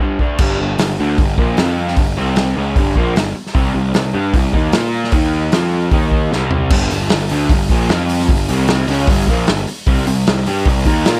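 A raw, overdriven garage guitar carries the riff from the very first moment at 0.0 seconds. Its double-tracked, lo-fi tone sits up front and moves through power chords on G, F, C, Bb and Eb. This driving, gritty fragment of blues rock and southern rock is cut from a longer piece and runs at 152 BPM in a straight 4/4. A vintage acoustic drum kit in a small room works crash, hi-hat, kick, snare and toms, pairing dark cymbals and a rolled-off top with a punchy kick and a medium-tuned snare. A growly, fuzz-soaked electric bass enters at 0.4 seconds, picked and bright as it sits low beneath the guitar. The riff plays twice, and a drum fill at 6.3 seconds leads into the repeat, all captured dry and close in a power-trio sound.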